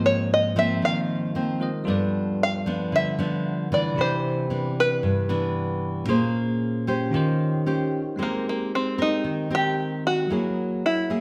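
Bathed in a wet recital hall reverb, this relaxed, sophisticated bossa nova fragment moves at 114 BPM in a straight 4/4, tuned to A4 = 438 Hz. An up-front, plunky, fingerpicked open-back banjo carries the melody, taking a twangy solo until 8.2 seconds, while a full-bodied nylon-string guitar and a bell-like, clean tine electric piano supply the accompaniment. Rich harmonies such as Ab69, Cmaj9, Bbm9 and Eb13 give way to Abmaj9 and Gb9 in the closing section.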